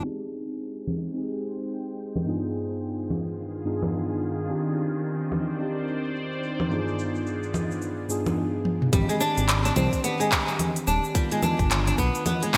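Organic downtempo at 108 BPM with swung 16ths and a mystical, earthy mood, this excerpt opens on an up-front, mellow tine electric piano with chorus, pumping and delay over Abmaj7, G7b9b13 and Cmadd9 changes and a gated-reverb electronic kit of congas, handclaps, crisp hi-hat, shaker and toms, as a tense, detuned, string-like drone with phaser and vibrato sustains from 0.8 seconds while a filter sweep builds toward a drum fill; at 8.9 seconds a boxy, fingerpicked flamenco guitar arpeggiates up front, joined by a smooth sawtooth synth bass and a tight electronic kick, all set in a lush hall reverb with bright 1980s-style digital production.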